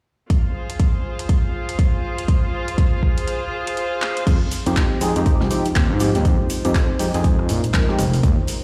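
Deep house in F minor at 121 BPM with a swung sixteenth feel, this late-night, smooth excerpt opens at 0.3 seconds on an Fm chord with a deep, up-front electronic kick, an electronic kit of crash, handclaps, metallic hats and rim click with a tape-warm edge, and a rich, earthy chamber string section bowing with light vibrato and pumping to the sidechain. A break arrives at 3.3 seconds, followed by a drum fill at 4.0 seconds. At 4.3 seconds the harmony shifts to Fm9 and a smooth gliding synth bass enters up front, its sawtooth-and-triangle tone wave-folded, with vibrato and portamento, alongside a very quiet acoustic studio kit of hi-hat and medium-tuned snare and a grainy, bright egg shaker. A warbling, nostalgic lo-fi pad of detuned square and triangle waves with ring modulation, chorus and built-in reverb then fades in slowly behind everything, mellow and distant. From 4.7 to 8.0 seconds a hollow, dark organ-like stab cuts through up front, percussive and decaying, colored by ensemble chorus and digital delay. 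The whole mix sits in light reverb and studio ambience, as if played on a big sound system in a bare room.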